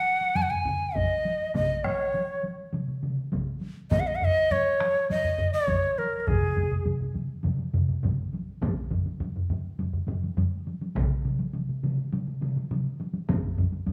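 Japanese traditional taiko drum ensemble music, driving and powerful at 102 BPM in 4/4 with a straight feel, cut from a longer piece in Ab suspended pentatonic. A breathy, bright shakuhachi carries the melody up front from Ab4 to Ab5 until 6.9 seconds, its close-miked, end-blown bamboo tone marked by vibrato, a crisp attack and chiff. Meanwhile three taiko ensemble parts enter within the first second: two are acoustic and close, struck with hard and heavy sticks, and the third has a vintage, band-limited color. At 1.6 seconds they are joined by solo taiko drums on hard sticks, which sound distant in a large room yet sit up front, and the band plays live in one room bathed in a wet large studio reverb.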